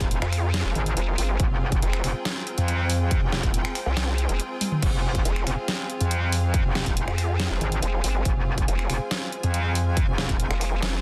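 A metallic wobble bass, bright and saturated with chorus and overdrive, drives this menacing, chaotic heavy wobble dubstep excerpt in F minor at 140 BPM in a half-time 4/4 feel, joined from 0.2 seconds by a nasal, resonant vowel-sweep wobble bass shaped by a formant filter. A punchy electronic kick joins an overdriven dubstep kit with a deep snare, hi-hat, finger snaps, toms and crash that sits up front, with a drum fill at 4.6 seconds. Behind them, an airy detuned supersaw pad holds sustained chords and a clear, bowed studio string section adds vibrato texture, both pumping under sidechain within a dense, heavily limited digital ambience.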